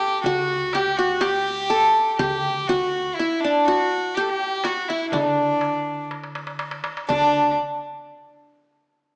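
In a straight 10/8 pulse, this stately, passionate fragment of a Turkish makam ensemble puts a bright-edged, fingerpicked qanun up front on the melody, joined by an equally forward, pure, airy bowed violin on a second line. A crisp, compressed metal-shell darbuka plays a fill from 6.1 s into a new section at 7.1 s, and a woody, dark pizzicato upright bass enters at 0.2 s. A wet recital-hall reverb surrounds the group, heard through a small-speaker sound.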